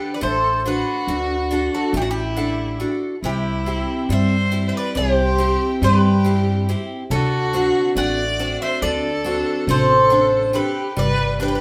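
A metallic, double-strung bouzouki carries a calm, tender Greek folk melody in 9/8 at 140 BPM, joined by a distant, vibrato-rich bowed violin on a second line, a bright picked steel-string acoustic guitar, and a woody, thumpy pizzicato upright bass up front from 0.2 seconds, with a clay-shelled darbuka played by soft hands entering in the background at 7.1 seconds, the whole band captured live in one room with a wet stone reverb as chords move from D through C and D7 to G in this fragment of a longer piece.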